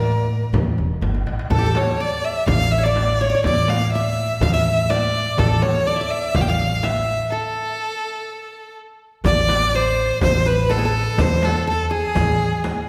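A straight 4/4 pulse at 124 BPM drives this short, longing passage of Arabic maqam ensemble music, cut from a longer piece, set first in A maqam hijaz before turning to A maqam nahawand at 9.3 seconds. Up front, a single bowed violin carries the soulful melody with a clear, focused tone and vibrato, while a bright-edged qanun, played with fingerpicks on its triple strings, adds a second line. A woody pizzicato upright bass on steel strings anchors the low end, and the percussion blends a crisp, small metal-shell darbuka sitting distant in the background with a frame drum struck with hard hands. A drum fill arrives at 1.0 seconds, a break comes at 7.3 seconds, and a very quiet riq with dark jingles joins at the shift to nahawand. The ensemble is heard from further back in a scoring stage, wrapped in a wet reverb that lends the performance a spacious, reflective air.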